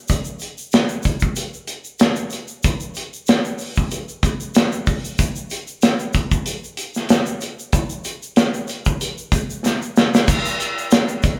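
Lightly swung sixteenths in 4/4 give this cinematic, silky soul excerpt an easy groove, carried by an up-front acoustic drum kit whose dark, rolled-off sound pairs a tight kick and medium-tuned snare with hi-hat and crash cymbal in a small room. A grainy, bright tube shaker sits close and dry in the background, while light reverb frames the band playing live together. A drum fill at 9.6 s leads into a new section at 10.3 s, where the clip ends at 11.4 s.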